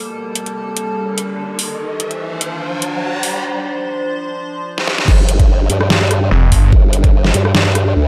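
A formant-sweep wobble bass, saturated and up front with chorus and overdrive, slams in at the drop at 5.1 s alongside a knocking electronic kick, while a growling, detuned sawtooth bass snarls through a brief distorted burst at 6.3 s. Before that, this aggressive, heavy wobble dubstep excerpt in G minor at 146 BPM with a half-time feel builds over an evolving wavetable pad with slow attack, phaser and sidechain pumping, moving through Gmadd9, Cmadd9 and Dm7. An electronic riser and a layered dubstep kit with a deep snare and metallic hats drive the build into a drum fill, all within a dark, lightly reverberant production.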